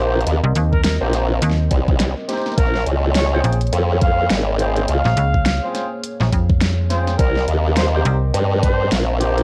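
Lightly reverberant and hazy with home cassette character, this playful, swaggering glitch hop fragment rides a swung groove in which a saturated, up-front formant-sweep wobble bass and a snappy, metallic slap-like FM bass sit over a knocking, overdriven electronic kick and a dubstep kit with a huge snare, while punchy, distant dark horn stabs with analog delay and a deep, nasal analog pad pumping in the background frame a mellow, roomy solo trumpet melody that enters at 0.7 seconds.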